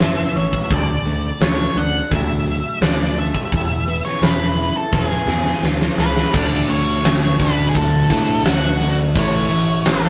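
A bittersweet, cathartic stretch of quiet-loud alternative rock, cut from a longer piece, opens with an octave-fuzz lead guitar carrying the melody over a small-amp electric guitar picking lo-fi, slightly broken-up arpeggios through digital delay, a growly, punchy picked bass, and a huge, up-front arena drum kit with a fat snare in a big room. After a drum fill starting at 4.9 seconds, a bright, compressed fuzz guitar riff joins in the background at 6.3 seconds as the chords move from D back to Aadd9. The rough rehearsal-room recording carries light reverb and tube saturation.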